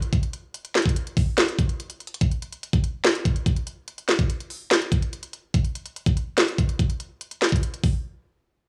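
An up-front electronic trap drum kit opens this eerie, brooding hip hop excerpt at 144 BPM in a half-time 4/4 feel, its knocking kick, sharp snare, crisp hi-hats and handclaps carrying vintage 12-bit sampler grit over dry cassette-tape character, light reverb and small-room ambience until 7.9 seconds, when the drums drop out for a brief break running from 8.0 to 8.7 seconds.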